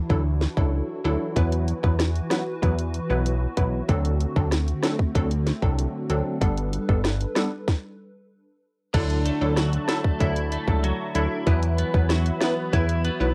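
This home cassette recording has a light reverb and a soft tape haze over the pad, stabs, drums and guitar, which gives this sunny, bouncy dancehall fragment a homemade, vintage feel. The island pop drum kit sits up front with a tight kick, sharp snare, rim clicks, hi-hat and crash cymbal, alongside a fat, detuned sawtooth bass whose thick, mellow sustain carries a moving notch. Crisp, bright wavetable chord stabs pluck and decay through a phaser. Deep in the background, a hollow, flute-like pad warbles under its ensemble chorus and holds long chords. Both the stabs and the pad pump against the sidechain as the harmony moves from Dadd9 through Esus2 and D7 to Gadd9. After a stop from 7.7 to 8.9 seconds, a clean, twangy twelve-string electric guitar enters with compressed, chorused arpeggios as the progression starts over.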